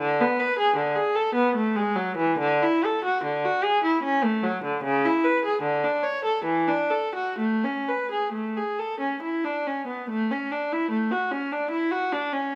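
Classical baroque-style suite movement for unaccompanied viola, cut from a longer piece, unfolds in a serene, dance-like 3/4 with free rubato as one bowed player draws a rich, reedy gut-string tone with light vibrato in period style, sitting up front yet carrying a distant quality through close, detailed microphones and moderate recital hall reverb, shifting into a new section at 10.1 seconds before the 12.6-second close.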